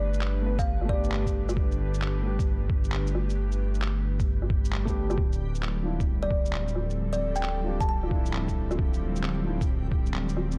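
A swung 133 BPM future garage groove in 4/4 rides on a muffled, pitched-down electronic kick and a compressed shaker, handclap and woodblock kit, beneath a deep, rumbling detuned saw bass in D dorian that pumps with sidechain. An airy, breathy pad with chorus and a felt-muted upright piano with audible action noise and analog delay carry the Gadd9 to Dmadd9 chords, while a reversed granular texture swells dreamily in the background. A woody, plucked kalimba with analog delay plays short melodic phrases at 0.0 and again from 6.2 seconds, crowning this melancholic, ghostly excerpt set in a dark digital ambience.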